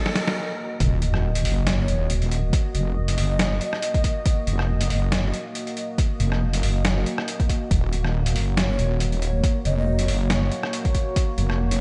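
A half-time deep dubstep groove at 139 BPM with 16th-note swing drives this cavernous, brooding Eb minor cut, where a gritty, pitched-down trip hop sampler kit of hi-hat, rim click and snare starts at 0.1 s, a riser and sub drop sit in the background, an overdriven electronic kick and a heavy, saturated sawtooth wobble bass hit up front at the 0.8 s drop, a deep, dark detuned pad with chorus holds sustained chords throughout, and a breathy, hollow shakuhachi with dub echo drifts in the background at 1.8 s and again at 8.7 s.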